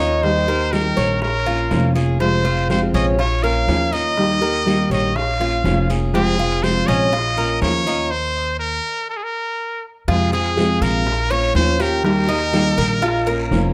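Lightly reverberant, this sultry, nostalgic slice of Cuban son and guajira is led by a brilliant, up-front solo trumpet with vibrato and scooped notes, over a fingerpicked steel-string acoustic guitar and a metallic, double-strung tres whose arpeggios carry a tape echo. A woody, thumpy pizzicato upright bass anchors the harmony, while distant, high-tuned bongos and a raspy, vintage guiro sit very quietly in the background from 0.2 s. The band hits a stop at 8.1 s before moving into a new section at 10.1 s.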